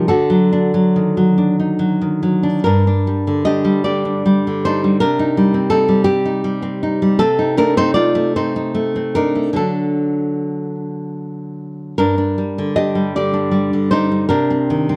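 Wistful and melancholic, this short section of a romantic piece for solo classical guitar unfolds in 6/8 with free, rubato timing. The fingerpicked nylon-string guitar sits up front with a warm, acoustic tone, ranging from G2 to Eb5 as its harmony moves from D through G minor, C minor and a diminished chord, returning to D before settling back toward G minor and C minor. A moderate small-room reverb and dark production lend the sound an intimate, shadowed quality.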